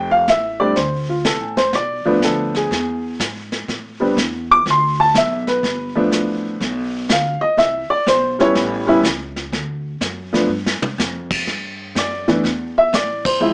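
Relaxed jazz piano trio swinging at 123 BPM in 4/4, with a boxy, up-front upright piano carrying the melody over thumpy, gut-strung pizzicato upright bass and a dark, smooth brush kit that enters at 0.3 seconds, all in light reverb and a small-speaker sound, moving through chords like Bm7b5, E and Amadd9 to a drum fill at 10.5 seconds, a shift to new material at 11.5 seconds and a band accent at 13.2 seconds in this cut from a longer piece.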